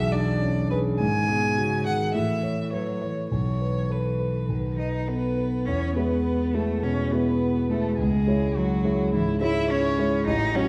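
Spirited and graceful, this quick classical-period piano trio movement in E major moves at 104 BPM in a straight 4/4, a fragment cut from a longer piece. A distant bowed violin with rich vibrato carries the melody, a close, smooth cello traces a second line beneath it, and an up-front concert grand with deep bass and long sustain supplies the accompaniment, all three playing throughout. A moderate stage reverb and a dark production frame the trio, and a new section begins at 5.7 seconds on an E major chord.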